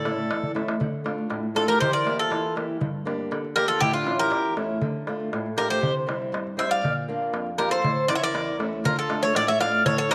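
A moderate plate reverb gives this short excerpt of Greek folk music a spacious sheen, with the bouzouki and acoustic guitar sitting up front. Set in D minor at 119 BPM in a straight 2/4, the mood is intense and tense. The metallic, double-strung bouzouki carries the melody between F4 and F5, some of its strings doubled at the octave, with a slapback echo trailing each picked note. Beneath it, a reedy, hollow accordion plays a second line with the same slapback echo, while an old ladder-braced acoustic guitar, woody and boxy with aged strings, is fingerpicked as accompaniment across a broad range from E2 to E5. A small, high darbuka with a clay shell and natural skin, played with soft hands and carrying a vintage, band-limited tone, comes in at 0.1 seconds and plays a short fill just before the chords move through Dm, Edim, Gm, A, C and Bb, turning to a new section back on Dm at 8.8 seconds.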